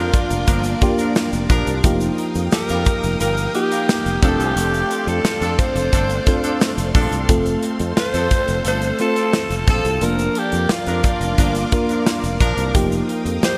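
A bright, 1980s-style digital production sits in a lush hall reverb, giving this uplifting, nostalgic pop excerpt a glossy sheen. A breathy, raspy alto saxophone carries the solo melody with vibrato and a punchy edge, over a mellow FM electric piano whose round, warbling chorus tone fills the middle. A sustaining fretless bass adds a growly low end, and a modern studio drum kit with a tight kick, medium-tuned snare, hi-hat and tambourine drives a straight 4/4 pulse, joined by a grainy egg shaker tucked very low. In the background, a vintage sawtooth string machine holds slow-attack viola chords under an ensemble chorus, a clean, twangy electric guitar picks out a compressed riff, and a distant horn section punctuates with stabs through digital delay until 12.6 seconds. The harmony rests over an F bass throughout, moving through Bb, Ebadd9 and Dm7 colours before settling on F and circling back.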